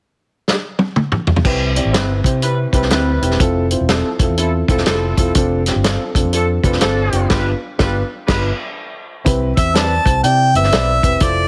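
A drum fill on a warm soul kit with dark cymbals opens this uptempo, uplifting 1960s-style soul excerpt in C major at 123 BPM with a swung feel, before a woody, slightly detuned upright piano and a round, foam-muted electric bass enter at 1.4 seconds, joined by slightly broken-up guitar stabs in the background and a tight horn section playing a second line, all under light reverb and heavily compressed radio sound, until the band accents a G7 and an up-front harmonica with scooped notes takes the melody at 9.6 seconds.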